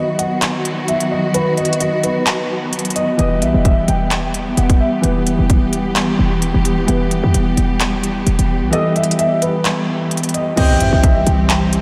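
A half-time trap groove drives this dark, hard-hitting hip hop excerpt, its electronic kit pairing a hard-clipped kick with crisp hi-hats, handclaps and a crash cymbal up front. It opens on a break under a filter sweep, as lush, bowed symphonic strings hold sustained chords and a mellow concert grand piano with long sustain carries the melody through analog chorus, a low-pass filter and tape echo. At 3.2 seconds the harmony moves from B to E minor, and a punchy, tight 808-style bass with a sine body and a noise layer enters alongside a soft, felt-muted upright piano tucked in the background. Later the kick drops out for a stretch and the deep-toned grand piano returns. At 10.6 seconds the chord shifts to C as a breathy, reedy flute with tape echo and a very quiet electronic impact arrive, and long cathedral reverb soaks the whole mix in a dreamy haze.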